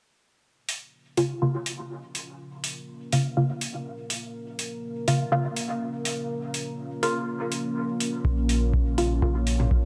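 A muted, detuned sawtooth chord stab sits up front in this hypnotic, hazy dub techno excerpt, its filter-pluck hits decaying into chorus, phaser and dub echo while a filter sweep runs across it, all held on a single Bb minor chord at 123 BPM in 4/4 with a light swing on the sixteenths. Metallic analog hi-hats open the passage at 0.7 s, close and present, and a deep, moody pad fades in slowly beneath them, its detuned unison sawtooths and sine sub octave warbling with a vintage, mellow glow through chorus, built-in reverb and its own filter sweep. Both the stab and the pad pump against the sidechain, giving the haze a steady breathing motion. Only at 8.2 s do a deep analog kick and a soft, round sub bass arrive together, the bass also pumping, and a brief touch of layered, tape-warm toms lands at 9.6 s. A moderate echo-chamber reverb wraps the whole, and the passage stops as if cut from a longer track.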